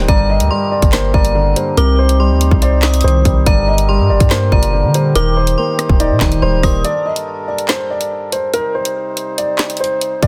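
A dark, smooth baby grand piano melody with digital delay opens this menacing G minor drill excerpt over a soft, felt-muted upright piano with audible action noise and reedy accordion chords, as a drill kit of hard-clipped kick, woody snare, hi-hats, handclaps and rim clicks drives a half-time 142 BPM groove beside a deep, sine-toned 808 bass and a ringing, inharmonic FM bell line with chorus and delay, before the bass, bell and upright drop out at about 6.8 seconds, leaving the piano, accordion and drums in a dense, heavily limited mix with studio reverb, with the upright briefly returning in the final moments.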